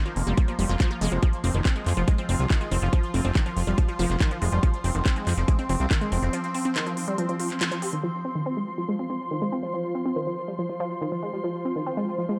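A punchy, warbling unison pluck drives this psychedelic trance excerpt with a detuned sawtooth riff, wave-folded and vintage in flavour, sitting up front with dub echo and sidechain pumping. Underneath, a tight, tape-warm electronic kick and a fat, thick analog bass with a filter sweep give the groove its driving, intense weight. A layered electronic drum kit adds crisp, low-pass-filtered hi-hats and handclaps. Behind them, a bright, pulsing gated texture holds sustained chords with chorus and reverb, while an ethereal, airy pad floats higher in a mellow haze of ensemble chorus and a moving notch. The kick drops out at 6.0 s and the bass soon after, leaving a band accent at 7.6 s before filter sweeps open up the synth arpeggio and texture from 8.0 s.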